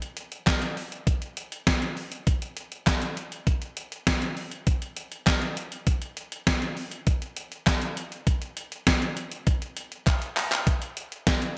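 This pop clip moves at a straight 100 BPM in 4/4, carrying a wistful, nostalgic mood through its bright 1980s-style digital production. A gated 80s digital drum machine sits up front for the full 11.6 seconds, its overdriven, sampler-style kit of handclaps, hi-hat, thumpy kick and snare drenched in gated reverb and re-recorded in a large room. A drum fill arrives at 10.1 seconds, and light reverb colours the whole mix.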